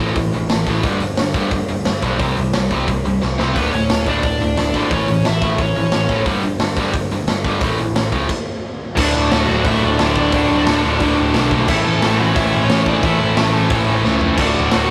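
A rough rehearsal-room sound with tube saturation frames this rowdy, energetic punk rock clip in D major at 177 BPM, where two picked, distorted rhythm guitars sit back behind a gritty, up-front garage drum kit with a punchy kick and pumping stone-room ambience, an overdriven bass growls underneath, a high-gain lead guitar breaks in from 3.5 to 6.2 seconds, and after a stop at 8.3 seconds a third double-tracked guitar joins the lead at 9.0 seconds for a final push through D and A chords.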